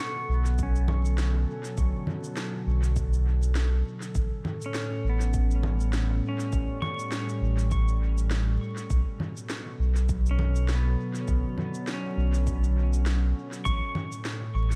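Vinyl crackle sits over a light reverb and a digital ambience, giving this hazy, deep slice of ambient dub a worn, nostalgic surface. A warbling, detuned pad of sawtooth and triangle tones holds slow-attack chords through its own chorus and built-in reverb, drifting between Bm7 and A7 with a lo-fi, vintage mellowness. Electric pedal steel guitar, played with fingerpicks and slide, spins clean arpeggios with volume swells, its tone compressed, softened by a low-pass filter and trailed by dub echo. The round sine sub bass enters at 0.3 seconds and sits up front, fast in attack and sustained, thickened by tube saturation. Electronic cabasa, congas and a woody snare join at 0.5 seconds with their own dub echo, while a deep electronic kick stays in the background until 13.8 seconds, both drum parts tape-coloured and re-recorded in a large room over a swung groove.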